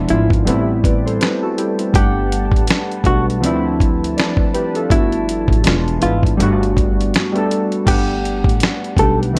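Warbling, pulse-and-sawtooth lo-fi synth keys with chorus and cassette-tape colour open this cosy, nostalgic lo-fi hip hop excerpt at 81 BPM in G major, over a deep, detuned ambient pad in the background and a woody pizzicato upright bass. From 0.1 seconds a gritty, compressed sampler-style soul drum kit sits up front with a thumpy kick, medium-tuned snare, hi-hat and crash, swung on the 16ths, while a clean, dark hollow-body jazz guitar plays a fingered melody through analog delay. The harmony moves through chords such as Am9, Gmaj9, Dm9 and E7b9, all under light reverb in a passage cut from a longer piece.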